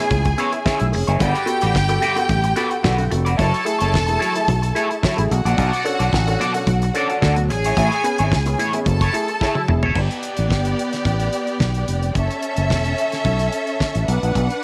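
Driving and sultry, this disco excerpt moves at 110 BPM in a straight 4/4, cut from a longer piece and set in a moderate echo chamber reverb, with a punchy, up-front fingered electric bass and a damped 70s drum kit with a fat snare and tight kick running throughout. A lush, close string section carries the second line with vibrato and a slapback echo, while a twangy, slightly broken-up electric guitar through wah and a warm grand piano accompany over chords such as Amaj7, Gmaj7 and F#m7. A drum fill at 9.4 seconds leads into a new section at 10.0 seconds. The piano drops out just before, at 9.8 seconds, and the guitar at 10.0 seconds, leaving strings, bass and drums.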